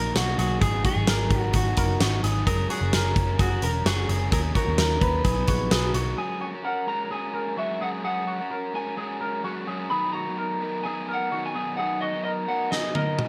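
A dark, lo-fi guitar melody through a small old amp leads this breezy, youthful jangly indie pop excerpt at 129 BPM, alongside crunchy overdriven rhythm guitar, twangy envelope-filtered arpeggios, a round foam-muted bass and a big, up-front rock kit with a fat snare and punchy kick, all in light reverb. A ringing vibraphone with tape echo slips in briefly in the background at 5.5 seconds, then bass and drums drop away at 6.1 seconds, with the drums returning only for a fill at 12.7 seconds.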